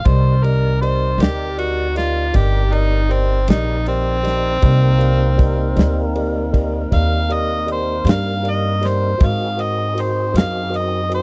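A slow 12/8 blues at 52 BPM in C minor, this brooding, soulful fragment rests on a dark, dry soul drum kit of tight kick, ride and medium-tuned snare with a rolled-off top, and on a woody, thumpy pizzicato upright bass with gut strings, moving from Cm9 to Ab7 at 9.2 seconds. Up front, an amplified, overdriven harmonica plays a gritty jazz-style solo throughout, full of tongue slaps, scooped notes and light vibrato. Behind it a fat tonewheel organ holds clean sustained chords with key click through a slow rotary speaker, while a mellow tine electric piano adds accompaniment through its built-in speakers, all captured in a close, 1970s-style studio sound with little reverb.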